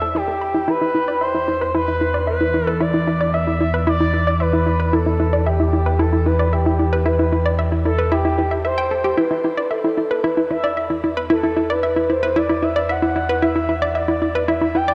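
Dark, warm production bathed in a wet plate reverb gives this hypnotic, expansive fragment of sequencer-driven space music its cavernous depth. At 113 BPM in a straight 4/4 and E minor, a hollow, bouncy square-wave pluck carries the riff, detuned and wave-folded with a fast attack, short decay, chorus, shimmer reverb and analog delay, and a filter sweep runs across it until 9.2 s. Alongside it, a smooth, expressive portamento lead sings the melody with vibrato and a soft attack, its mellow sawtooth-and-triangle tone treated with chorus, shimmer reverb and analog delay. Underneath, an evolving, warbling analog drone holds a vintage pulse-width-modulated bass on E2, thickened by chorus and tube saturation. The harmony rests on E minor before shifting to an open E5 at 9.2 s, where the drone fades in for the closing stretch to 14.9 s.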